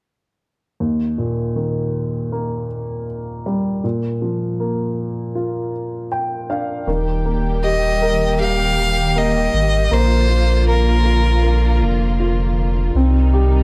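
A dark production set in a moderate recital-hall reverb frames this heartfelt, emotional pop ballad in Eb major at 79 BPM, where a woody upright piano with long sustain carries the accompaniment from 0.8 s and adds a fill near the end of its opening stretch. At 6.9 s a round, deep sub bass and an intimate, sul tasto string section with soft attack enter beneath it. From 7.6 s a clear, focused solo violin with vibrato sings the melody over chords moving between Eb and Bb and on to Cm before the cut.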